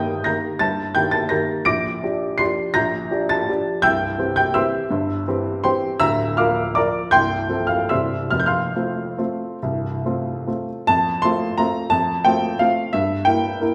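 This classical piano waltz in 3/4 is a short passage cut from a longer piece, and its mood is sparkling and graceful. A solo upright piano carries it throughout, sitting up front with a woody, intimate tone, a slightly detuned edge, short sustain and audible action noise that keeps the instrument feeling close and natural. The pulse is played with rubato, and the harmony moves from Eb/G and Gm7/Bb through C and Bb/D before settling on F at 8.3 seconds. A new section begins at 10.9 seconds and closes on an Edim/G chord. The recording places the piano in a church or concert hall, where a wet recital-hall reverb surrounds its close, slightly imperfect sound.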